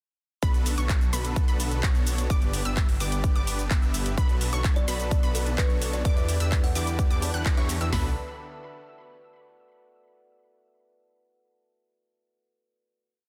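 Driven by a punchy four-on-the-floor kick and snare, toms, metallic hats, handclaps and shaker, this powerful, anthemic festival progressive house drop stacks a huge, thick supersaw riff and a bright detuned pluck arpeggio, both pumping with sidechain and tape echo, over a saturated detuned saw bass and a very quiet, airy pad, with a woody, ringing kalimba melody arriving at 4.8 seconds before everything settles on a final chord at 7.9 seconds in a dense, heavily limited, dry mix.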